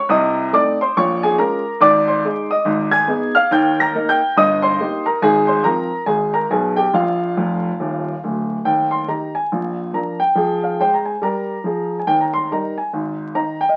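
A lone upright piano opens at once in a swinging, playful stride jazz style, cut from a longer piece and lasting about 14 seconds in 4/4 with a lilting swing feel. The piano sounds warm, woody and natural, placed up front, ranging from deep bass notes to bright high treble. Its harmony moves through a diminished chord, a minor seventh and major and minor shifts before settling home, and a short fill from 7.4 to 8.6 seconds leads into a second section. From 8.6 seconds the music turns toward a dominant seventh and resolves again before closing on a new chord. The sound carries the patina of a very old 78 rpm record, with vinyl crackle and a wet but brief club reverb that places the piano in a club.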